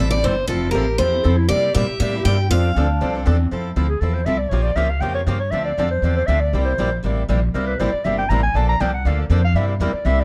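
Acoustic string swing in the jazz manouche vein, this lively, swinging excerpt moves at a brisk 238 BPM in F major with a dark production and light reverb. A bright, boxy steel-string guitar carries the melody up front for the opening 3.2 seconds, while a breathy clarinet weaves a second line with vibrato, subtone and scooped notes. At 3.5 seconds the clarinet takes a smooth-topped, jazz-style solo over changes that pass through Bbm6, Dm7 and Bbmaj7 before returning to C7. Underneath, two picked acoustic guitars keep up the accompaniment: a swing-style one with a warm, boxy tone, and a concert guitar sitting in the background with audible finger squeak. A thumpy, woody upright bass on gut strings is plucked prominently up front, anchoring the groove throughout.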